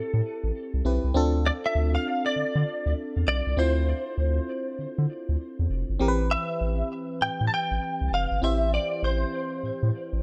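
A round, deep analog bass sits up front in this bouncy, punchy new jack swing groove, entering at 0.1 seconds with a dark, sustained tone and a fast attack that anchors the low end. Over it, a clean, direct-recorded electric guitar carries the melody in a compressed, picked voice, colored by ensemble chorus and tape echo. An FM electric piano fills in the accompaniment with a glassy, bell-like attack, a noise layer and decaying notes, treated with its own chorus. At 99 BPM in 4/4 with a swung sixteenth feel, the harmony moves from Am9 to Dm7 at 1.1 seconds and returns to Am9 at 6.0 seconds, keeping the R&B mood in A minor. Light reverb and a digital ambience frame this short cut from a longer piece, which runs just over 10 seconds.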